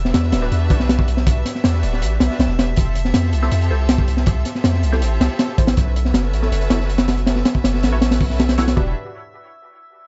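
Drum and bass with a jungle edge, frenetic yet atmospheric, cut from a longer piece and set in a dark, small room with a rolled-off top. A crunchy, saturated breakbeat kit with a punchy kick and high-tuned snare drives up front beside a deep, sine-like 808-style bass, while a lush bowed string section carries sustained chords through Em9, Fmaj9 and B9sus4 under vintage 12-bit sampler grit. In the background a glassy harmonics texture drifts with chorus and reverb, and a muted, detuned dub chord stab with phaser and dub echo flickers at 0.4 seconds before returning from 3.4 seconds on.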